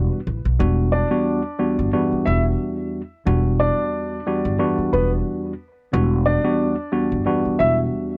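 A warm upright piano carries the melody in this short, reflective boom-bap hip-hop excerpt, entering at 0.9 seconds with a smooth, vintage tone, short sustain and a touch of tape echo, its sound trimmed at both ends of the spectrum. Beneath it, a mellow tine electric piano holds down the accompaniment on a single Em9 chord, sounding worn and slightly out of tune yet clean and direct, colored by cassette tape and filtering. A pizzicato upright bass with steel strings anchors the low end, woody, dark and thumpy, sitting up front in the mix. The groove moves at 90 BPM in 4/4 in E minor, with a light 55% swing on the sixteenths giving it a relaxed lilt. The whole track carries a gritty character from worn, warbling old tape with pitch drift and a light reverb.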